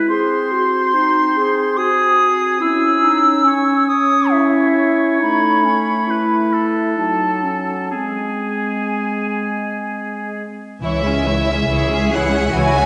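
This melancholic, elegiac classical passage in C# minor and 3/4 moves with rubato at 62-73 BPM. It opens at 0.0 s with a clear, vintage-toned oboe and a dark, roomy clarinet playing second lines, soon joined by a pure, crisp-edged silver flute above and a distant French horn section holding soft-attacked chords through G#7/B#, C#m, A, D#dim/F# and G#. At 10.8 s the winds give way to rich, bowed chamber strings on C#m: an up-front violin melody with vibrato over a second violin line, focused violas and a close double bass, with cellos entering at 11.7 s, all in a wet church or concert hall reverb.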